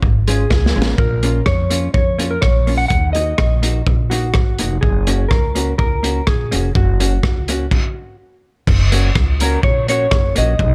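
Pizzicato upright bass with a woody tone and a crunchy, gritty breakbeat kit with a punchy kick and dark cymbals open this joyful, cheerful ska piece at 125 BPM in F# major, joined at 0.3 seconds by a mellow, fingered electric guitar carrying the melody and a clean, compressed hollow-body jazz guitar in accompaniment, all in a dry mix, with an early drum fill and a stop from 7.7 to 8.7 seconds leading into a new section.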